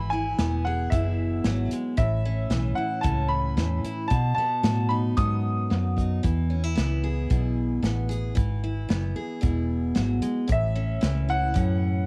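Recorded at home on cassette in a small room with light reverb, this short cut from a longer honky-tonk and classic country piece has a sunny, heartfelt glow at 113 BPM in a straight 4/4. A bright upright piano with a brilliant, woody tone and long sustain carries a solo up front, ringing out from the start until 5.9 seconds and returning at 10.5 seconds. Beneath it, a picked steel-string dreadnought guitar gives full-bodied accompaniment throughout, with finger squeak audible. The piano, guitar and drums all carry the tape's cassette colouring. A vintage foam-muted electric bass, dark and round, sits up front as the loudest part. A natural country drum kit with an airy, polished studio sound, a medium-tuned snare, a punchy kick and hi-hat keeps time as the chords move from E to A to B and back to E, ending on A.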